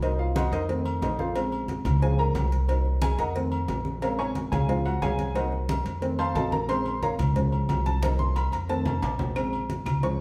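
An upright piano, woody and slightly detuned with a short sustain, sits up front and carries a solo through this fiery, danceable salsa fragment, cut from a longer piece, at a brisk 180 BPM in 4/4 and Bb minor. Beneath it, a dark, thumpy pizzicato upright bass with gut strings holds the low end close to the listener. The harmony cycles repeatedly through Cm7b5, F7, Bbm7 and Db. The percussion behind the piano gathers thick-skinned, medium-tuned congas in the background, a tight, high-tuned cowbell played with soft hands, and ringing metal-shelled agogo bells and timbales with a compressed, saturated edge. A drum fill arrives at 8.0 seconds, and woody claves slip in quietly at 9.4 seconds just before the clip ends. The band plays live in one room, bathed in a large studio reverb that gives the whole performance a wet, spacious glow.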